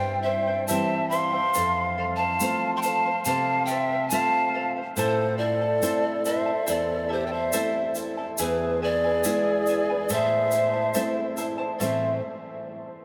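Festive yet melancholic, this slow Andean folk piece in A minor moves at 70 BPM in a straight 4/4, its chords passing from C through F and A minor to E before settling back on A minor. A mellow, hollow pan flute carries the melody up front with a crisp, chiffy attack and vibrato, while an airy, end-blown quena traces a softer second line beneath it, and a shimmering charango and a deep, fingerpicked nylon-string guitar fill out the accompaniment. A grainy, distant tube shaker joins at 0.7 seconds, and the whole ensemble rings out in a vast cathedral reverb, cut from a longer piece.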